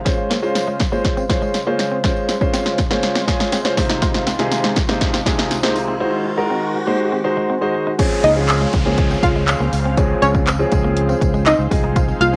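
A straight 4/4 beat at 121 BPM drives this summery, upbeat dance-pop excerpt in Db major, where a punchy, layered house drum kit with handclaps and crash cymbal sits up front beside an intimate concert grand piano, a detuned, warbling sawtooth pad pumps in the background behind a twangy clean electric guitar riff and a jingly tambourine, a riser and downlifter sweep in from 4.9 s through the build-up, and just after the 8.0 s drop a round analog pluck melody and a growly fingered electric bass arrive, with most parts carrying a cassette-tape tint under light reverb.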